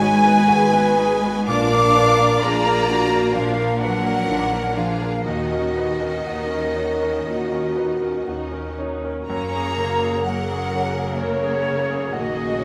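Tender and moving, this excerpt from a cinematic film score unfolds slowly at 58-65 BPM in 4/4, with a rubato feel that lets each phrase breathe. A rich, focused violin section carries the melody from somewhat in the background, while a bright, pure flute group with crisp attack and close-miked presence shares a second line with a second violin section whose soft attack and smooth top lend it a tender glow. A brilliant, natural baby grand piano and an expressive viola section with vibrato and portamento supply the accompaniment, and a mellow, tight French horn section holds sustained chords with a punchy yet smooth edge. Beneath them, a thumb-plucked concert harp rings out arpeggios, and rich, even cello and distant double bass sections anchor the bass. The harmony moves through G#m7, A#, D#m7 and F#add9 across the 12.6 seconds, all set in the lingering reverb of a scoring stage.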